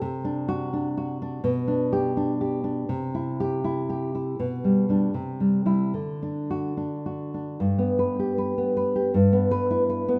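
In a flexible, rubato 2/4, this short romantic excerpt for solo nylon-string classical guitar has a sunny, warm mood. The guitar sits up front with a dark, full-bodied, thumb-plucked tone and the fresh bite of new strings, ranging from G2 to B4 as its harmonies move through D7/C, G/B, C and D before settling on G at 7.6 seconds. A moderate recital-hall reverb gives the sound a natural sense of space until the fragment breaks off at 10.2 seconds.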